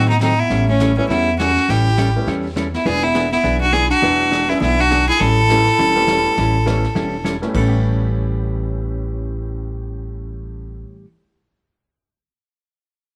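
Swinging at 205 BPM in 4/4, this playful western swing fragment in A mixolydian puts a clear, airy-bowed fiddle melody up front, with a breathy, whispered clarinet second line beneath it until both stop at 7.2 s, while a thumpy, gut-strung pizzicato upright bass, a dark, clean hollow-body jazz guitar, a woody upright piano entering at 1.0 s and a brushed drum kit tucked in the background carry it through light studio reverb over chords of A9 and E9.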